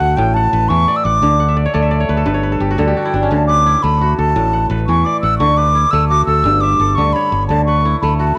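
An airy wooden flute with vibrato and a soft attack carries the melody from the start, over crisp, ringing fingerpicked kora arpeggios that break into a fill from 1.4 to 3.3 seconds and a bright, direct fingered electric bass, in this hypnotic, warm cut from a longer West African traditional piece in D major and 12/8 at 114 BPM, with the up-front parts set in a moderate plate reverb.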